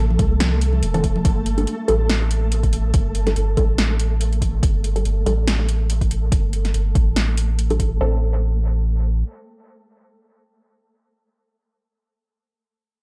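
This cavernous, heavy deep dubstep excerpt in A minor opens on a round, up-front sub bass and a grainy, flickering granular texture with lush chorus. Muted, detuned chord stabs with phaser and dub echo soon join, moving from Am to Gsus2 while filter sweeps shape both the bass and the stabs until 8.0 s. At 142 BPM in a swung half-time feel, an overdriven electronic kick and a deep house kit with punchy snare and metallic hats carry the groove through that first stretch, and congas with hard hands and dub echo sound briefly in the background at the start; under light reverb, the harmony returns to Am at 8.0 s, after which the sub bass holds until 9.2 s and the stabs ring on to 11.8 s.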